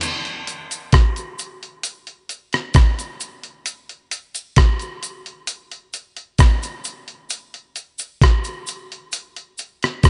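Sunny and uplifting, this straight-feel reggae groove, cut from a longer piece, rides on a compressed, gritty sampler-style drum kit placed up front, with a thumpy kick, rim click, hi-hat and crash cymbal, while an acoustic, small-room cabasa sits quietly behind it, all under light reverb and a softly rolled-off top end.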